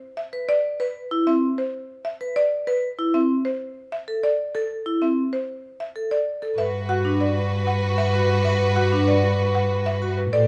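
A buzzing marimba played with medium hard mallets opens this bright, hypnotic stretch of minimalist pattern music, its woody, dry tone carrying the melody up front, joined almost at once by a metallic, ringing vibraphone spelling out arpeggios with its motor off. The pulse is straight at 192 BPM in 6/4, settled in G major, and the harmony begins on a rootless Cmaj7 before the chords drop away at 2.8 seconds, leaving the two mallet instruments to carry on. At 6.6 seconds the music arrives on Gmaj7 and the texture fills out: a rich, bowed double bass enters close and up front, a lush violin section lays down sustained chords with smooth vibrato, and a mellow French horn adds a second line in the background with light vibrato. Light reverb gives the ensemble a modest sense of space, and the passage is cut from a longer piece, ending at 10.5 seconds.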